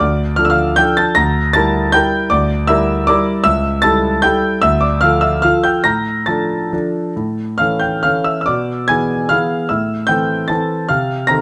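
A solo concert grand piano opens this wistful, nostalgic classical waltz in D minor, swaying in 3/4 with a free rubato that drifts between 133 and 171 BPM. The harmony moves from D minor through darker, unsettled chords, turns toward A major near 7.2 seconds, then settles on A minor before closing on an F7 over C as the 11.4-second excerpt breaks off. Captured by close, detailed microphones with light reverb, the instrument sounds intimate and natural, with deep bass, audible action noise and an up-front presence across its span from C#2 to Bb6.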